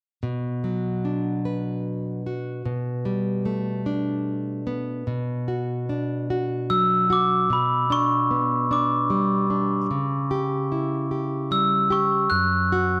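A fingerpicked classical nylon-string guitar with fresh strings opens this gentle, dreamy children's lullaby in B minor, played rubato in 6/8 at 50 BPM over chords moving from Bm through Gadd9/B and G/B to C#dim, until a bell-like, ringing glockenspiel struck with soft plastic mallets enters up front with the high melody at 6.7 s, both parts bathed in a lush recital-hall reverb in this excerpt cut from a longer piece.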